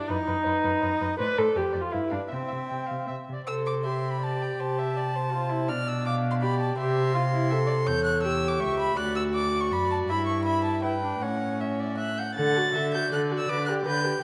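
Graceful and lively, this quick classical-period movement for string quartet moves at 163 BPM in 3/4 with a rubato feel, opening in C major and turning to D major at 7.9 s. The first violin carries the melody with an airy bow and a close, gut-string tone, climbing as high as A6, while a darker second violin, heard at a distance, traces a second line beneath it. The viola supplies accompaniment with a rich sound and light vibrato, and the cello anchors the bass. All four players share a nasal, reedy period-style timbre. Cadential progressions through Dm7, G7 and C give way to bright motion through A7/E, D and A before the brief closing passage from 12.4 s settles on D and G/D, all set in a moderate scoring-stage reverb that rounds out this fragment of a longer piece.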